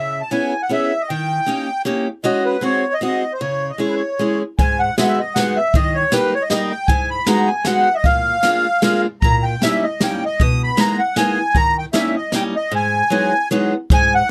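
An up-front accordion with light tremolo tuning carries a reedy, sweet melody through this whirling, nostalgic musette waltz at 154 BPM in 3/4 with a rubato swing, over a bright, boxy picked steel-string acoustic guitar, moving from C# minor to G# minor as airy jazz brushes with a high-tuned snare join at 4.6 seconds in a light reverb, in a short cut from a longer piece.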